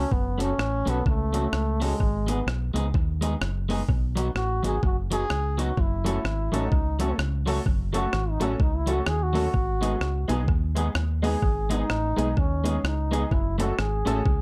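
A breathy, close-miked trombone carries the melody from the first second, its soft attack and light vibrato giving this mischievous, energetic ska excerpt an intimate, whispered voice up front in the mix. Beneath it, an electric guitar at the edge of break-up plays picked, compressed accompaniment, sharing the trombone's plate reverb. A round, dark fingered electric bass and a gritty, sampler-style breakbeat kit with a thumpy kick, hi-hat and rim click sit up front together, driving a swung 4/4 groove. At 6.0 seconds a detuned, jangly honky-tonk upright piano joins with woody stabs treated with analog delay and plate reverb. The chords move among F#m, G#m and B under a dark, warm production with light reverb.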